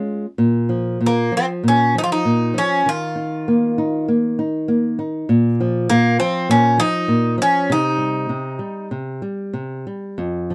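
A bright, metallic Greek bouzouki carries the melody from 1.1 to 8.9 seconds, its picked double strings, some doubled at the octave, sitting up front in this longing, passionate fado-style ballad in Bb minor. Beneath it, a small-bodied nylon-string guitar fingerpicks the accompaniment throughout, with audible finger squeak, moving through Bb5, Ebsus2 and Cm at a rubato 98 BPM in 4/4. The dry, close sound, touched by light reverb, recalls a 1970s studio, and this excerpt is cut from a longer piece.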